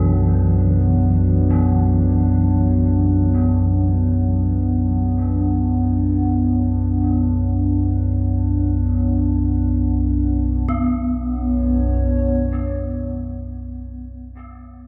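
From the first moment, a deep, warbling drone rumbles beneath a moody, detuned analog pad holding a Bmadd9 chord through chorus and phaser, while a bronze gamelan-type metallophone rings out shimmering arpeggios through dub echo, forming an ominous, desolate dark ambient passage in free time, steeped in spring reverb and cassette-tape grain, with the drone and metallophone stopping at 13.7 seconds and the pad at 14.1.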